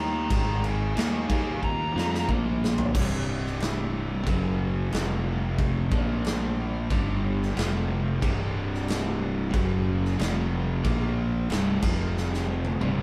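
A band playing live in one room fills a moderate studio reverb, giving this cut from a longer stoner and doom metal piece a heavy, hypnotic weight. The dark, compressed fuzz lead guitar opens with a brief distorted melody that ends by 2.3 seconds. The big rock drum kit enters at 0.3 seconds, up front with a punchy kick, a medium-tuned snare, crash cymbal and toms in a natural, big-room sound, and it plays drum fills that return near 12.2 seconds. Underneath, the growly fuzz fingered electric bass sits prominently with an overdriven, direct-and-amped tone. A bright, double-tracked overdriven electric guitar and two thick fuzz guitars, one dark and very quiet and the other warm, grind out the low picked riff in the background. A swirling, warbling phased string machine holds vintage sawtooth chords with a slow attack and ensemble chorus, very quiet beneath the heaviness.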